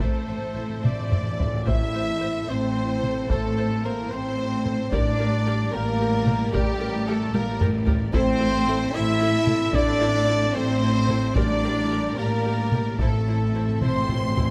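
Heavy-stick taiko drums, close and dry, pound through this dark, epic cinematic film-score cue in 6/8 at 74 BPM in A phrygian, over bowed cello and double bass sections, as lush violin sections with vibrato carry the melody and a second line, rich violas and a smooth, distant string section sustain the harmony, a mellow, roomy solo trumpet adds stabs, dark French horns enter at 0.6 seconds with soft-attack sustained chords, timpani in the background return at 11.4 seconds, and an airy, hollow flute section appears at 13.8 seconds before this cut from a longer piece ends.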